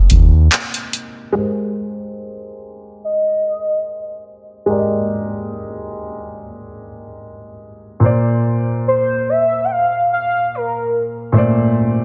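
Contemporary R&B at a smooth, tender 72 BPM in Ab major with a light sixteenth-note swing, this excerpt opens on a dark, mellow grand piano voicing Abadd9, with a round analog bass note and a booming drum machine of deep kick, metallic hats and handclaps carrying a gritty 12-bit sampler edge heard only in the first second. A filter sweep then runs from 1.4 seconds as the piano moves through Abmaj9 and Bbmaj9, and a velvety, chorused synth lead with vibrato and delay enters at 3.0 seconds, all set in light digital ambience within a dense, heavily limited modern master.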